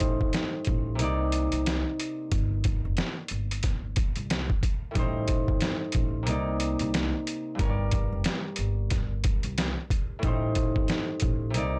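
Boom-bap hip-hop with a moody, tough edge, this short cut from a longer piece rides a 16th-note swing in 4/4. A sampler-style drum kit sits up front, compressed and pitched down with vintage 12-bit grit, pairing a thumpy kick with a medium-tuned snare and hi-hat. Underneath, a pizzicato upright bass with steel strings gives a woody, low foundation. A fingerpicked concert harp, also up front, plays mellow, ringing accompaniment through a cassette-tape haze and filtering that trims its top and bottom. The harmony drifts through Am7b5 and Cm9, pauses on a stretch with the chords suspended, then returns and settles on Gm before circling back to Am7b5, all in a dry, close room.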